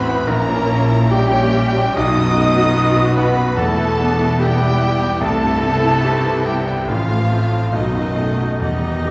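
Classical romantic movement for piano and orchestra, tragic and passionate, unfolding in a rubato 4/4 at 67-76 BPM, where an intimate, up-front grand piano with audible action noise carries the melody alongside lush vibrato violins, while a second, very quiet violin line, a hollow flute and a clear oboe add countermelodies, portamento violas accompany as mellow French horns hold sustained chords, rich distant cellos and smooth double basses anchor the bass through chords from A#dim7 to B7, and very quiet hard-mallet timpani enter only at 8.6 s, all set back in a reverberant scoring stage with vinyl crackle.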